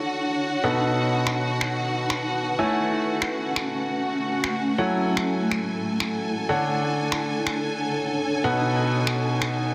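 Energetic yet bittersweet, this short piano house excerpt rides a swung 4/4 groove, moving through Dmaj7, B7, Amaj7 and F#m7 chords. A clear, polished baby grand piano sits up front with its riff, shaded by a low-pass filter and a dub echo. Alongside it, a symphonic violin section holds lush, bowed chords with vibrato, intense yet distant in feel, while a granular cloud pad adds a blurred, evolving, detuned texture with a slow attack, long release and its own reverb. Layered electronic finger snaps enter at 1.3 seconds, their snare softly clipped and low-pass filtered within a touch of studio ambience. A brief electronic swell arrives at 4.0 seconds, and the whole arrangement lands in a dense, heavily limited modern master with light reverb.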